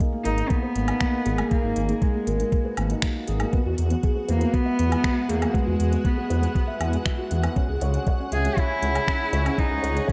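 A muffled, thumpy, pitched-down kick sits up front in this moving, cinematic piano-and-strings electronica excerpt, joined by a deep, rumbling detuned saw bass with sidechain pumping, and an organic electronic kit of finger snaps, smooth hi-hat and woodblock re-recorded in a large room. A soft, felt-muted upright piano plays a riff with audible action noise, subtle chorus and analog delay, while a woody, bowed cello with vibrato carries the melody from 0.2 seconds, also through analog delay. A bright, cloudy granular pad drifts in at 0.7 seconds with sustained chords over G#madd9, Eadd9 and C#m, and the dreamy mix is soaked in plate reverb.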